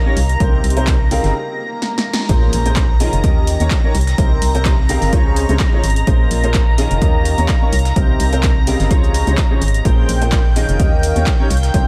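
A clear, woody upright piano riff with chorus, pumping and a diffuse ambient delay leads this bittersweet, energetic piano house excerpt at 127 BPM in Bb dorian, joined by a hollow, organ-like FM bass, a silky, bright analog string pad, a very quiet, moody ambient pad, a punchy, tape-warm drum machine with handclaps and shaker, a gritty sampler-style kit, and an electronic kick, while a faint swell and impact carry a brief break at 1.3 seconds into the drop at 2.3 seconds.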